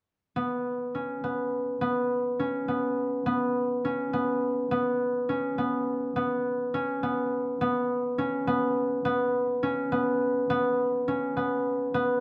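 A lone concert harp enters at 0.4 seconds, fingerpicked and ringing, sitting up front with a warm acoustic tone. This restless, hypnotic fragment of a contemporary instrumental piece moves in a straight 5/8 metre, and the harp is tuned to A4 = 438 Hz. The playing stays within a compact span from B3 to C#4, opening on a Bsus2 chord. Around 6.2 seconds the music moves into a second section, which carries on until the harp stops at 12.2 seconds. Close, detailed microphones capture the instrument with light reverb around it.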